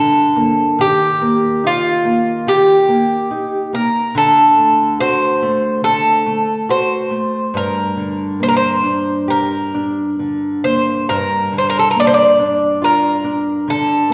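The Irish bouzouki carries the melody up front, its picked double strings giving a metallic edge to a passionate, mournful line in G minor. This is a fado-style ballad at 70 BPM in 4/4, played with a rubato feel, and the passage is cut from a longer piece. A nylon-string guitar sits close by in a small, fingerpicked accompaniment, and both instruments play together from start to finish across the 14.1 seconds. The harmony moves from G minor through E-flat and a D7 before returning to G minor, settling on a Gm7 at 11.1 seconds as the opening phrase begins again. A wet reverb, like that of a church or concert hall, surrounds the pair and lends the intimate duo a lingering, spacious glow.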